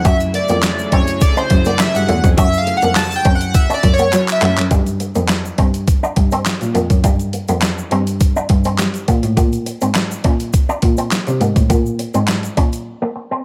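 A dry mix with little reverb opens this slick, late-night slice of early-eighties boogie funk at 103 BPM in a straight 4/4, lifted from a longer piece and tuned slightly under standard pitch. A glossy, chorused polysynth takes a solo over an F#m9 chord in the first 4.7 seconds, its pulse-width and sawtooth tones shaped by a filter sweep, while a silky string machine warbles softly in the background with a slow attack and long release. A bowed cello carries the bass line up front with vibrato and portamento, and a twangy, compressed electric guitar picks a clean riff through an envelope filter and ensemble chorus. A crisp, overdriven 8-bit drum machine with a thumpy kick, medium-tuned snare, handclaps and hi-hat sits forward in the mix, joined by a grainy egg shaker, and a drum fill at 4.1 seconds leads into a sparser stretch with the chords dropped before a Bbsus2 arrives at 9.1 seconds. 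The groove halts for a brief break at 12.9 seconds, leaving the guitar to ring out alone.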